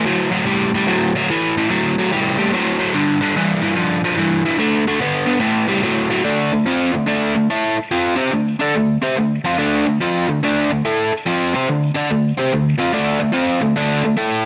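Brooding and gritty, this rock excerpt moves at 144 BPM in 4/4 with a swung eighth-note feel, centered in D minor. A lone electric guitar carries the whole piece, sitting up front with a biting, overdriven edge and a bright, picked attack that is double-tracked for extra thickness. Its line spans from G2 up to D5, moving through power chords on A, G and D before settling onto a D minor chord at 6.3 seconds, where a second section begins and runs to the close at 14.5 seconds. A moderate echo-chamber reverb surrounds the guitar, giving it a roomy tail of about 1.6 seconds. Cut from a longer piece, the passage feels like a solo statement hanging in a shadowy space.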